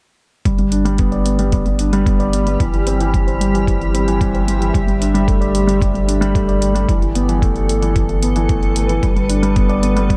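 This excerpt of piano and strings electronica opens at 0.5 seconds with a dark, mellow concert grand playing a riff, placed up front and trailed by digital delay, over a muffled, thumpy kick, a layered electronic hi-hat and a round sine sub bass holding G1. The kick sounds pitched down and compressed, and both drums carry a tape-warm character from being re-recorded in a small room, while the sub bass pumps with the sidechain. At 1.9 seconds a cloudy, blurred granular pad drifts in, sustaining chords through its built-in reverb and pumping in time as well. Harmony moves from G through C/G, Dsus4/G and Asus2/G before returning to G, all resting on the G pedal in the bass. The mood is luminous and tender, with a dark, warm production and light reverb.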